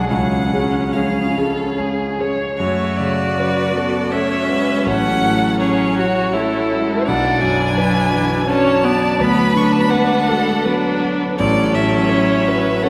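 A slow, elegiac piano quintet movement in F# minor opens with a focused, up-front lead violin melody over a dark, mellow concert grand with deep bass and a smooth, even viola accompaniment, while a woody second violin sits distant and a rich cello sits distant in the background, both as second lines, each string bowed with vibrato. The melancholic music moves in a rubato 3/4 at 71-85 BPM, tuned to A4 = 439 Hz, settling on F# minor at 2.6 s and turning to B minor at 7.1 s, bathed in a long, wet church reverb. This passage is cut from a longer piece.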